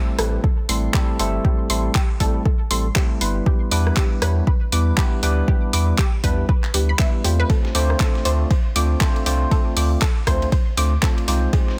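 A dense, heavily limited master with digital ambience carries this late-night, deep house cut at 119 BPM over Am7, Em7 and Dm7, where a detuned sawtooth analog pluck arpeggiates through chorus, cassette tape, analog delay and sidechain pumping; a bell-like tine electric piano adds clean stabs with tape echo; a round, dark analog bass pumps up front beside an overdriven electronic kick; a layered deep house kit supplies handclaps, hi-hat and rim click; and a gritty, sampler-style soul kit of hi-hat, ride and snare slips into the background at 7.5 seconds.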